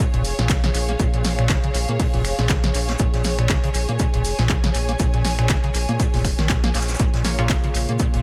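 A squelchy, resonant square-wave acid riff opens this short, trippy acid house excerpt at 120 BPM in Bb minor, driven by overdrive, cassette-tape grit, dub echo and sidechain pumping, alongside a punchy, tape-warm electronic kick, an analog drum machine of snaps, handclaps, hi-hat and snare, and a very quiet, distant brushed kit with shaker. A round, deep analog bass with tube saturation joins at 0.1 s beneath a lush, bowed string section played sul tasto with vibrato, all held on a single Bb minor chord in a swung, echo-heavy mix. Near the end a nasal, band-passed chord stab with phaser flickers in at 7.2 s, and a warbling, lo-fi pad with chorus and reverb surfaces at 7.3 s in the background, deepening the hypnotic pull.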